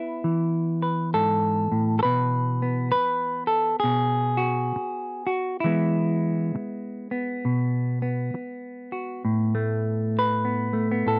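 A semi-hollow electric guitar opens alone on an Asus2 chord, its clean, dark tone placed up front in a dry, close studio sound with a 1970s character and a light touch of reverb. This short folk excerpt moves at an unhurried 66 BPM in 4/4, with a gentle swing on the eighth notes that gives the fingered part a relaxed, peaceful feel. After an unharmonized stretch beginning at 2.0 seconds, the harmony settles onto E at 5.7 seconds, and at 9.3 seconds a new section returns to Asus2. The guitar ranges from G#2 to B4 with a dark, hollow-body tone. Tuned slightly sharp to A4 = 441 Hz, the instrument carries a warm, peaceful mood throughout.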